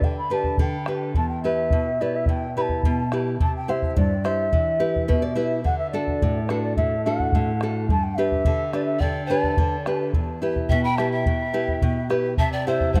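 A mellow large quena carries the melody from a distance, its airy wooden tone touched with vibrato and an analog delay, in this festive, earthy Andean folk excerpt in 2/4. Beneath it, a bright, full-bodied nylon-string guitar sits up front with fingerpicked classical accompaniment and a short fill at 4.8 seconds, alongside a round bombo. A breathy bamboo pan flute with tongued chiff adds a second line from 9.0 seconds, and a moderate plate reverb soaks the dreamy mix as the chords move through G, E minor, C and D.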